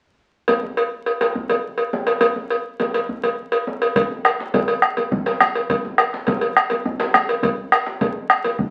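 Powerful and earthy, this short cut from a longer West African traditional drum ensemble piece rolls in a straight 12/8 as an up-front metallic cowbell and a deep, soft-handed djembe begin together at 0.5 s, joined at 4.0 s by a round, close bombo, all heard through wet studio reverb and the crackle of a very old 78 rpm record.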